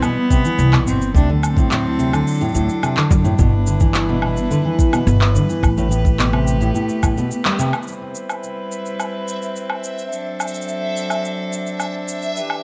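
The fingerpicked steel-string acoustic guitar, a dark, full-bodied jumbo, sits up front with digital delay on its arpeggios from the start until 7.7 seconds, in this hopeful, playful folktronica excerpt at 107 BPM in C lydian. A rich, reedy cello carries a brief bowed melody with digital delay over the first 2.5 seconds, while a distant string quartet with a gut-string, period-style tone holds sustained chords through a low-pass filter across the whole passage. Tape-warm electronic woodblock, shaker and handclaps run throughout, joined by a soft electronic kick and a woody pizzicato upright bass until 7.1 seconds, with the harmony moving from Cmaj7 through D7, G6 and Am9. The kick drops out briefly before a band accent at 7.5 seconds, and from 7.9 seconds a filter sweep moves across the string quartet as the chords return to Cmaj7 and D7. In this closing stretch a bright, dreamy backwards swelling texture with granular, reversed tones and its own reverb floats in at 8.8 seconds, all set in light small-room ambience.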